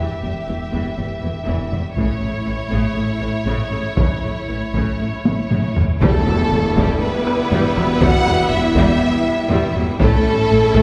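Dark and epic, this cinematic orchestral film-score excerpt moves at 120 BPM in a straight 4/4, centred on E dorian and tuned slightly low to A4 = 438 Hz. A lush violin section carries a smooth, even melody with vibrato, while a second violin line with a soft attack, a focused chamber viola section, a bowed cello section and an expressive double bass section sit in the background beneath it, along with a mellow, distant French horn section holding sustained chords. At 2.0 seconds a taiko ensemble enters with hard sticks and a vintage, band-limited sound, joined by a very quiet cymbal swell and tam-tam that continues until 8.0 seconds. A drum fill leads into a second section at 6.0 seconds, where a clear string section adds sustained chords and a brief, close and dry timpani hit lands on an ensemble accent. The harmony moves between Em and A, and a wet scoring-stage reverb places the orchestra further back in the room.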